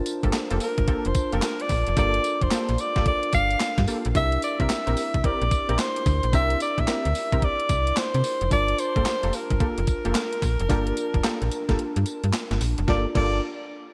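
New jack swing R&B in G dorian at 110 BPM with a punchy, confident swing, where a breathy alto saxophone with vibrato and scooped notes carries the jazz-style melody up front over a snappy, metallic slap-like FM bass, a thumpy, overdriven 12-bit drum machine with gated reverb, handclaps and tambourine (its kick dropping out from 11.8 to 12.9 s), detuned, wave-folded polysynth stabs, and a lush, dreamy FM electric piano with a soft pad layer moving through Gm9 and C7, all in a bright 1980s-style digital production cut from a longer piece.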